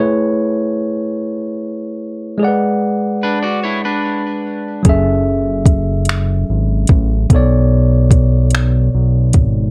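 A slow six-eight sway carries this late-night, yearning R&B fragment, where a warm, clean tine electric piano voices chords throughout, a slightly broken-up, twangy electric guitar with digital delay slips in briefly at 3.2 seconds, and from 4.8 seconds a tape-warm electronic kit of finger snaps, metallic hi-hat and soft kick arrives alongside a fat, detuned sawtooth analog bass, set in a light reverb.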